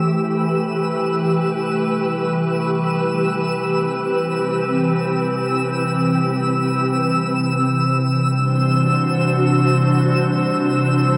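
Awash in a huge ambient reverb with a 7.8-second tail, this luminous, darkly warm ambient fragment from a longer piece drifts in free time, tuned to A4 = 438 Hz, as an up-front glassy FM pad with ensemble chorus holds slow-blooming chords through G6/9, Cmaj7 and D9, while a warm, warbling analog drone with chorus enters beneath at 1.5 s and a twinkling granular texture sparkles high above with an octave-up shimmer.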